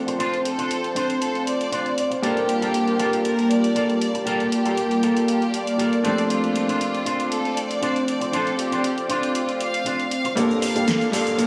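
A lightly swung 118 BPM groove of punchy snare, bright hats and shaker drives this groovy, cosmic nu-disco excerpt in G minor, where a lush, detuned unison pad with chorus sits up front over a brilliant, worn grand piano in the background, a twangy envelope-filtered guitar riff and a clear, focused bowed violin section carrying the melody with vibrato across Dm7 and Gm9 chords, all awash in dreamy reverb, until a build-up at 10.4 seconds brings in a punchy filtered picked bass and, at 11.3 seconds, a very quiet riser.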